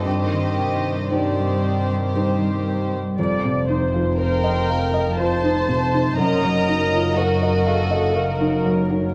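A worn, warbling cassette-tape sheen with drifting pitch colors this short cinematic excerpt, set in a moderate scoring-stage reverb. In a rubato 3/4, the mood is longing and sorrowful, carried by a sul tasto violin section with light vibrato on the melody, while a second, clear and floating violin section sings a line beneath it. A soft, felt-muted upright piano with thick felt and audible action noise supplies intimate accompaniment alongside a dark viola section, and a ringing concert harp plays fingerpicked arpeggios in the background. A cello section holds the bass with soft attacks from the opening, and a double bass section joins it at 3.2 s, both sitting in the background of the mix. The harmony moves through Cmadd9/G, F7 and Ebmadd9/Gb, lending the passage an unresolved, wistful ache.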